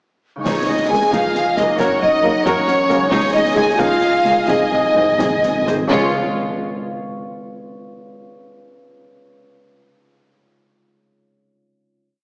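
A pure-toned silver flute and a ringing harp open the piece at 0.4 s, and the orchestra joins at once in a triumphant, soaring heroic film-score theme in 6/8. An expressive, close violin section carries the tune, doubled by a soft-attacked clarinet, a tight trumpet section and mellow French horns, over lush symphonic violins, a driving viola ostinato, a dark cello ostinato and distant double basses. A marching snare over bass drum with bright clash cymbals, short accented chords from a clear trombone section, and hard-mallet timpani that return at 4.5 s for a fill push the slowing theme toward its final chord at 5.9 s, all set in a reverberant scoring stage yet squeezed by heavy compression into a small-speaker radio sound.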